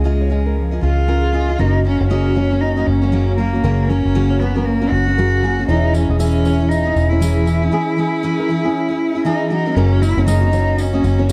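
A rich, bowed cello with vibrato carries the melody up front through a touch of tape echo in this easy-going, carefree acoustic pop excerpt, swung lightly on the sixteenths. A full-bodied picked steel-string acoustic guitar and a round, punchy, foam-muted electric bass drive the accompaniment, while a fingerpicked flamenco guitar, complete with finger squeak and its own tape echo, spins arpeggios in the background. A jingly, dry tambourine joins at 5.9 s, a break arrives at 7.7 s, and a moderate spring reverb lends the dark production its glow.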